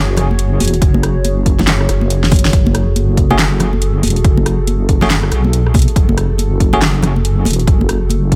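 A deep, wobbling sawtooth bass sits up front with tube saturation and chorus, holding low sustained notes over a single F#madd9 chord in this cavernous, heavy deep dubstep cut at 140 BPM, swung and half-time in F# minor. Above it a moody, detuned analog pad sustains with chorus and phaser, while a layered drum kit of fat snare, metallic hats, handclaps and rim clicks comes in at 0.2 seconds, joined by an overdriven electronic kick at 0.8 seconds, with a short fill at 2.2 seconds. Hard-handed congas and bongos stay dry in the background, and a bell-like tine electric piano adds clean stabs through dub echo from 3.3 to 6.8 seconds, all in a fairly dry mix.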